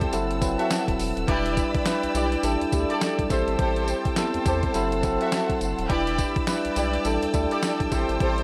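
A slick, bouncy slice of new jack swing R&B at 104 BPM, riding a swung sixteenth-note feel through a looping F#m7b5, Em7, A7sus4, Am7 progression. An up-front, overdriven 12-bit drum machine with a thumpy kick, medium-tuned snare, hi-hat and tambourine drives the groove beneath a round, deep analog bass with a nasal edge, while a bell-like tine electric piano with subtle chorus carries the chords. Two distant studio string sections fill out the background: a lush, vibrato-rich ensemble holding sustained chords and a soft, floating, sul tasto group playing delayed stabs, all set in light digital ambience.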